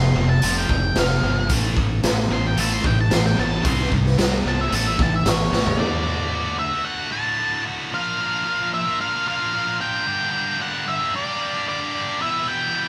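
A band playing live in one room, lightly touched by reverb, drives this anthemic, cathartic quiet-loud alternative rock excerpt at 112 BPM in a straight 4/4, with a dark octave-fuzz lead guitar soloing over an up-front scooped high-gain riff guitar and a second one set in the background. A growly fuzz fingered bass and a raw garage kit with a high-tuned snare and punchy kick, entering at 0.4 seconds and capping the opening with a fill at 5.5 seconds, carry the first section through chords from F5 to A. At 5.8 seconds the bass, drums and background guitar stop, leaving the lead and the front riff guitar to ride through D, Bb, Gm and Em.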